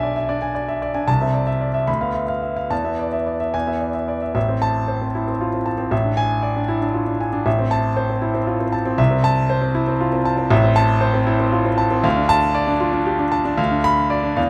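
A rubato 6/8 pulse at 78 BPM in dotted quarters carries this passionate, agitated classical virtuoso piano study in A minor, a 14.5-second cut from a longer piece, in which a solo grand piano, clear and intimate with audible action noise, sits up front in a moderate recital hall reverb, spanning A1 to B5 as it moves from an opening on E7/B through Esus4 to E, then into a second section from 4.4 s built on Am, E7/A and Dm.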